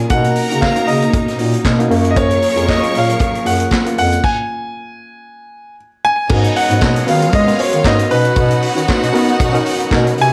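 Disco with a driving, glamorous feel and a light swing, cut from a longer piece, where a bright, brilliant baby grand carries the melody up front with slapback echo and audible action noise over a reedy, worn electric piano in spring reverb and a mellow, scooped bass clarinet holding the bass line with vibrato. Two bowed string sections add lush color, one close and focused on a second line, the other distant in the background on sustained chords, while a vintage kit with punchy kick, dark cymbals, handclaps and gated reverb drives the groove beside a very quiet, dry cowbell. A stop falls between 4.2 and 6.3 seconds before the harmony shifts to a G#m11 chord.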